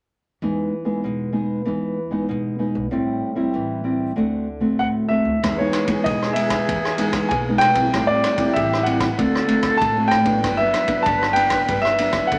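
A baby grand piano with long sustain carries the up-front melody from 4.8 seconds in this joyful, sunny samba and choro piece at 96 BPM, moving over Emaj7, Am7 and D7 before landing on Gmaj7. A thumb-plucked nylon-string guitar with fresh strings and a woody pizzicato upright bass set the harmony from the start, and at 5.4 seconds an airy, distant flute adds a tongued second line with vibrato while a vintage kit brings a tight kick, dark ride cymbal and rim click. A small, wet room reverb gives the warm ensemble a cozy glow in this passage cut from a longer piece.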